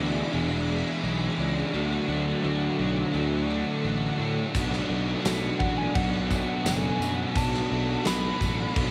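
Wistful and blissful, this short cut from a longer shoegaze and dream pop rock piece moves at an unhurried, straight pulse in 4/4, with the chords passing from E7 to Dmaj7 and then Bm7. From the opening, three overdriven electric guitars stack their riffs into a thick wall: a biting part with analog chorus, a second guitar set back in the mix and smeared by reverse reverb, and a raw, double-tracked garage guitar also sitting in the background. Beneath them a fingered electric bass growls with fuzz. Above, a swirling vintage string machine holds sustained chords through ensemble chorus and phaser, while a very quiet, shimmering twelve-string acoustic guitar picks arpeggios. At 4.5 seconds a big rock drum kit crashes in with a tight kick and medium-tuned snare, joined by a jingly tambourine, and from 5.6 seconds a round, warbling FM synth lead adds a gentle melody coloured by tape echo. The whole home cassette recording is close and dry, carrying the hazy softness of tape.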